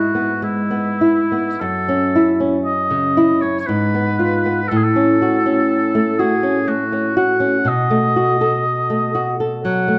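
A dark, warm recording set in a recital hall with a moderate 1.5-second reverb opens this short passage from a longer romantic duo for oboe and classical guitar, moving in a slow, rubato 3/4 at 49-62 BPM with a lyrical, warm mood. The nylon-string guitar sits prominently as a small, dusky-toned, fingerpicked accompaniment with audible finger squeak, moving through E/G#, Fdim/Ab, F#m/A and B7. Above it, the roomy oboe sings the classical-style melody with a light vibrato, playing throughout the full 10 seconds.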